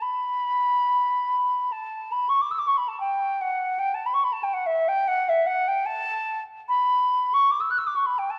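Classical and lyrical, this serene 8.4-second excerpt of an expressive piece for unaccompanied silver concert flute moves in a free, rubato 4/4 around 65-77 BPM, with the airy, metallic flute playing a straight tone with crisp attacks in its upper register, set in a moderate recital hall reverb and coloured by the worn, warbling pitch drift of old cassette tape.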